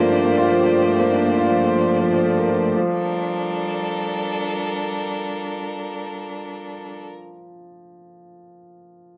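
A concert grand piano stands out, playing a repeating riff with a deep bass, long sustain and an open tone, placed up front and carried by tape echo until 9.2 seconds. Alongside it, a string quartet with one player per line holds sustained chords from the start until 7.1 seconds, its bright, bowed sound intense and close, marked by vibrato and an airy bow. This piano and strings electronica moves at 119 BPM in a straight 4/4, with a melancholic, hypnotic mood. The harmony rests on Bbmaj7/G before shifting to Gm7 at 2.8 seconds, where a second section begins. The short clip, cut from a longer piece, sits in a wet studio reverb and carries the character of a home recording on cassette.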